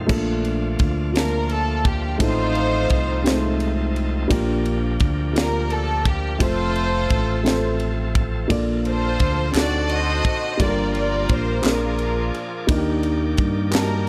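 Uplifting and jubilant, this slow gospel passage in 6/8 is cut from a longer piece and set in a studio reverb. A dark, woody upright piano and a bright, shouting tonewheel organ, lightly overdriven through a slow rotary speaker, open together, the organ holding sustained chords beneath the piano's accompaniment. A round, punchy fingered electric bass sits up front alongside a crisp fusion drum kit with a high-tuned snare, tight kick, ride and crash, recorded in a small room. At 1.2 seconds a symphonic string section enters with the melody, bowed sul tasto with a soft attack and a pure, floating tone that sits close in the mix. Hollow group handclaps join in the background at 9.5 seconds as the harmony moves from Bbmaj7 through D7b9 and Bb7 toward a closing Ebmaj7.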